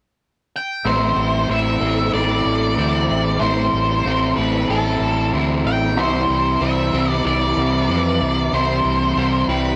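Rock with a hazy, dreamy mood, moving at 94 BPM in 4/4 with a straight feel in A minor, cut from a longer piece. An up-front octave-fuzz lead guitar carries the melody from 0.6 seconds, its distorted, fuzzy tone colored by cassette tape and analog delay. In the background, a twangy electric guitar through a small old amp plays bright, slightly broken-up arpeggios, thickened by ensemble chorus and its own analog delay. An overdriven semi-hollow guitar plays a prominent riff with a warm, hollow-body character and a subtle chorus, joined at a very quiet level by a second small-amp guitar playing a riff with a dark, compressed edge. Underneath, a growling fingered bass with overdrive sits up front. The harmony rests on Am7 before shifting to C at 6.0 seconds, all within a light reverb and the soft haze of a home cassette recording.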